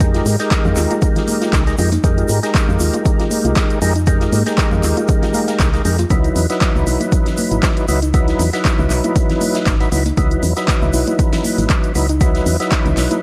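Moody and hypnotic, this deep house excerpt at 118 BPM swings over Fm11 shifting to Dbm11 at 6.1 s, with a gritty, overdriven tonewheel organ stabbing up front through chorus vibrato, slow rotary speaker, delay and sidechain pumping, a woody, dark FM bass, a punchy up-front electronic kick, smooth-hatted deep house claps and hi-hats, a very quiet big-room rock kit of hi-hat, shaker and snare, a grainy tube shaker, ringing high-tuned congas entering at 0.7 s, and a soft, round detuned pluck spinning background arpeggios with chorus and delay, all over a bed of vinyl crackle in small room ambience.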